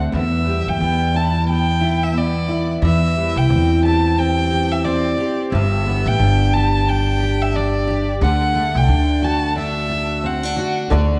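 A bowed violin with vibrato and portamento carries an expressive, smooth-topped melody from 0.1 to 10.8 s in this sunny, carefree acoustic pop excerpt at 89 BPM in 4/4 with a swung sixteenth-note feel. Beneath it are a bright, full-bodied, double-tracked fingerpicked steel-string guitar, a woody, thumpy pizzicato upright bass and a mellow felt-muted upright piano heard softly at the very start and again from 10.9 s, all moving through Em, C, G and D in a moderate echo-chamber reverb.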